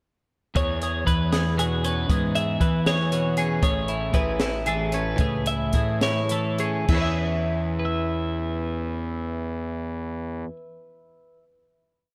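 Math rock and midwest emo in 6/8 at 67-78 BPM, this short, bright and wistful piece in E major moves from E6 to Amaj9, slows from 3.6 s, and settles on a final E6 chord at 6.9 s. Two clean, compressed twelve-string electric guitars carry it: one plays a twangy picked ostinato accompaniment with spring reverb and slapback echo, and the other plays up-front syncopated fingerstyle arpeggios. A round, punchy fuzz bass with overdrive locks to the kick of a compact cocktail drum kit, whose high-tuned snare, crash, hi-hat and rolled-off top keep a 6/8 groove until 7.0 s, and a lush hall reverb gives the mix a big arena sound.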